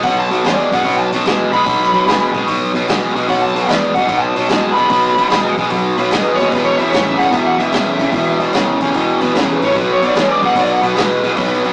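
A sludgy, double-tracked distorted guitar riff sits up front, with a dark, overdriven lead guitar from a small cranked amp carrying the melody, a round, foam-muted vintage bass tucked in the background, and a natural-sounding vintage drum kit with a tight kick and medium-tuned snare, all swinging through a swaggering, raunchy blues rock and southern rock power-trio excerpt captured as a rough rehearsal-room recording with tube saturation, small-speaker character and a wet small-room reverb.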